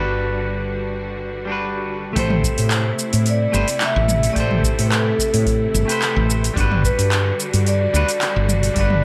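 Sunset chillout with a wistful, lightly swung feel, opening on an airy, ringing vibraphone melody with delay over a bright, picked clean electric guitar, lush, distant bowed strings and a round, up-front woody fretless bass with a dark, hollow tone. At 2.2 seconds an overdriven deep house kit with metallic hats, handclaps, shaker and toms, filtered and treated with gated reverb, arrives alongside an analog electronic kick as the chords move from Gmaj7 to Am9 and back. Light reverb and bright 1980s-style digital production shape this cut from a longer piece.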